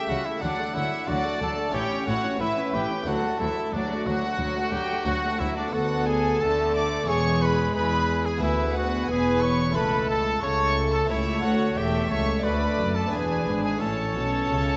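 A straight 4/4 pulse at 89 BPM drives this lively, festive baroque-style concerto movement, cut from a longer piece, where a clear, soft-attacked solo trumpet carries the melody alongside a close, period-style violin section with gut-string tone and light vibrato, a second violin section adds its own line, a dark, distant viola section and a round, plucked harpsichord accompany in the background, and a rich double bass section joins a cello section on the bass from 0.1 s, all set in a wet concert hall as the music moves from D major to A major at 5.7 s.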